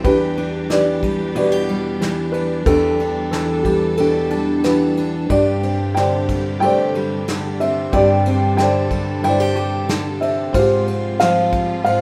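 A straight 4/4 pulse at 92 BPM carries this heartfelt, intimate acoustic folk-pop ballad, cut from a longer piece, where a dark, boxy felt-muted upright piano sings the melody up front beside a bright fingerpicked steel-string acoustic guitar with audible finger squeak, a woody pizzicato upright bass thumps in the background, a distant, roomy brush kit with punchy kick, snare and ride keeps time, a clear, focused bowed string section holds vibrato-laden chords, and a ringing concert harp enters with mellow arpeggios at 2.3 seconds, all under light reverb as the harmony moves from Em7 to Gsus4 to Fmadd9/Ab.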